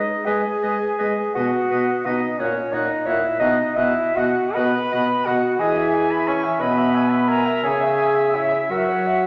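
A pure, straight-toned concert flute carries the tongued melody through this serene, tender fragment of a slow romantic movement for wind quintet in a rubato 6/8, with a distant oboe adding a second line with light vibrato, a warm French horn and a classical-style clarinet filling the accompaniment, and a mellow, vintage-sounding bassoon holding the bass, all heard together from 0.0 to 9.3 seconds and bathed in the wet reverb of a recital hall.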